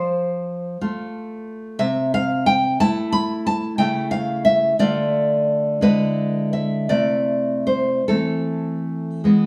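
Set in a small stone room with a 1.2-second reverb tail, this short live recording of a fragment cut from a longer piece places a solo nylon-string guitar up front, its tone warm and full-bodied with audible finger squeak. It is a romantic classical work in A minor and 6/8, tuned to A4 = 441 Hz, and its melancholic, wistful mood unfolds over about 9.5 seconds. The tempo is rubato, drifting between 50 and 63 BPM in dotted quarters. Fingerpicked across a range from C3 to B5, the guitar moves through F, Am/C, A/C#, Dm, E7/D and back to Am/C, coming to rest on Am/E at 8.1 seconds. The intimate room ambience and the stone reverb give the lone instrument a wistful air.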